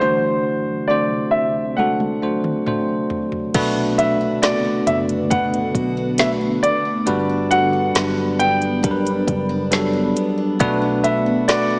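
Pop ballad with a hopeful, emotional mood, where a clear, up-front baby grand piano carries the melody over bell-like tine electric piano and a shimmering, ethereal pad with chorus, phaser and built-in reverb, a smooth R&B drum kit with a woody snare entering with a fill at 1.8 seconds, and at 3.5 seconds a picked steel-string acoustic guitar with tape echo arpeggiating in the background beside a round, foam-muted electric bass, all set in a lush hall with a small-speaker sound in this fragment of a longer piece.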